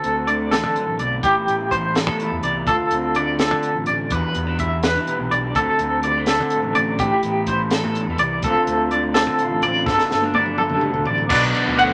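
Moderate studio reverb lends this short math rock and midwest emo excerpt a sense of space, with a clean, twangy guitar sitting up front. At 83 BPM in a straight 6/8, the mood is playful and intricate, moving through rich chords such as D7, Am9, Em9 and Gmaj9. The twangy guitar plays bright tremolo arpeggios in a high register over a dark, slightly broken-up fingered electric guitar that carries the accompaniment. A growly fingered bass with fuzz and overdrive holds the low end, while a compact cocktail kit adds a punchy kick, high-tuned snare, dusky cymbals and toms, all dry in tone. The drums play a fill from 9.9 s, and at 11.3 s a cranked, double-tracked stack guitar bursts in with a driven, picked riff as the harmony lands on Bm7.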